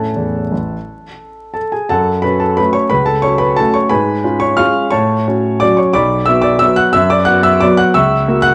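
Close, detailed microphones catch the audible action noise of a solo grand piano set up front, with light reverb and vinyl crackle around it. This playful, elegant classical waltz in F# minor moves in 3/4 at 178 BPM with rubato and uneven beats, and the polished, intimate piano sustains long across a range from A1 to F#6. The short cut from a longer piece opens on an A chord before turning to F# minor at 1.9 seconds, then passes through B minor and F#7 by its close at 8.5 seconds.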